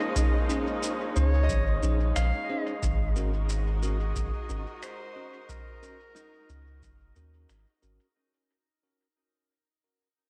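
A 90 BPM groove in 4/4, with a light swing on the sixteenths, drives this spacious, hazy ambient dub fragment, cut from a longer piece and fading out across its full length. A deep, overdriven analog kick sits in the background from 0.2 seconds, alongside a muffled, compressed shaker and finger snaps carrying dub echo, and a round, soft sub bass arrives up front at 1.2 seconds. Above them, a muted string section holds dark, veiled chords with vibrato, moving from Bbm11 to Ab9sus4 at 2.8 seconds. A smooth-topped clarinet carries the solo melody in a classical style, while a ringing, fingerpicked harp plays arpeggios and a bell-like tine electric piano adds bright, clean stabs, all three trailing dub echo. A light small-room reverb gives the whole mix a compact sense of space.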